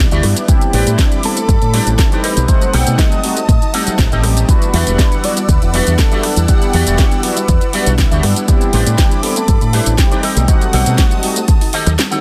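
A steady, straight 4/4 nu-disco groove at 120 BPM in E minor, driven by a punchy, up-front electronic kick and a house kit with a cracking snare, metallic hats, rim click and shaker, sets a groovy, sleek mood over chords moving from Am11 through B7b9b13 to Em9. A fingered electric bass with an envelope filter sits prominently underneath, while a twangy, clean-picked electric guitar with its own envelope filter and ensemble chorus plays a riff, a mellow, detuned synth brass with chorus and vibrato carries the accompaniment, and a lush, phased unison pad sustains chords in the background, both pumping against the kick. A soft, round pluck adds very quiet arpeggios low in the mix, and from 0.5 s a thick, nasal unison lead sings the melody through tape echo and a cassette-tape colour, all in a dry, dense, heavily limited master of a passage cut from a longer piece.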